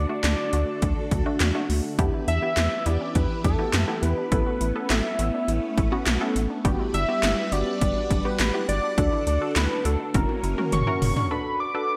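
A thick, detuned unison lead carries the melody from the first moment, sung out through a digital delay over a punchy, funky polysynth comp with chorus, a swirling phased string machine holding sustained chords, and a rubbery, hollow square-wave bass sitting up front. This is melancholic yet driving synth-pop at 103 BPM in a straight 4/4, cut from a longer piece, moving through D, Em, Aadd9 and Gmaj7 before returning to D and pushing to F# and Bm7. The 80s electronic pad drums arrive at 0.2 seconds with a punchy kick, handclaps, metallic hats, toms and an overdriven snare drenched in gated reverb, the kit sounding as if re-recorded in a large room. A warbling, lo-fi pluck slips in very quietly at 2.0 seconds with mellow arpeggios. A drum fill closes the passage from 10.1 seconds, and the whole mix has a bright, 1980s-style digital polish with light reverb and digital ambience.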